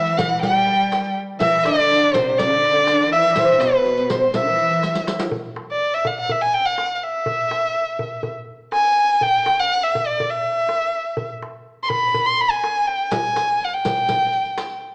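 Heard through a small-speaker sound in a moderate recital-hall reverb, this festive excerpt of Arabic maqam ensemble music in E maqam saba moves at 123 BPM in a straight 4/4, led by a single up-front bowed violin singing with vibrato and portamento throughout, while a woody, double-strung fretless oud and a distant, rich cello section carry second lines only until 5.0 s, a riq with bright jingles plays at the start and returns near the close, and a clay-shelled darbuka keeps time all the way, with a drum fill at 4.8 s marking the turn into the second section.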